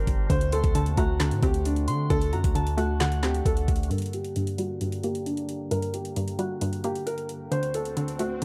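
Hard-hitting and brooding, this half-time trap excerpt in G harmonic minor at 133 BPM sets a worn, boxy baby grand melody with tape echo over a hollow, nasal square pluck, soft flute-stop pipe organ chords with chiff and tremulant, a deep sine 808 bass that drops out at 3.9 seconds along with a pure FM synth bell line, and an up-front trap kit of knocking kick, woody snare, metallic hats and handclaps, as a filter sweep runs from 3.9 seconds and an electronic swell enters at 7.9 seconds in a dark, dry mix.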